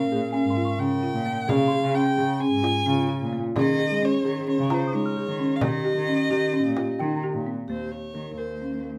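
This short excerpt of contemporary chamber music opens with a dark, bowed violin carrying the melody in Eb mixolydian, its vibrato and portamento giving the line an expressive, singing quality. Around it, a vibraphone played with soft mallets adds a ringing, airy second line with a slow motor vibrato. A folk marimba with soft mallets lays down woody, rustic arpeggios that sit forward in the mix. Beneath them a muted cello supplies a veiled bass. A delicate, bell-like small celesta enters at 0.3 seconds as a sweet texture in the background, and a small, bright frame drum joins at 1.0 seconds, sounding close and dry. The 9/8 meter at 261 eighth-note beats per minute keeps the mood restless and playful as the harmony moves from Bbm7 to Eb7sus4 and Eb7, all set in a light reverb.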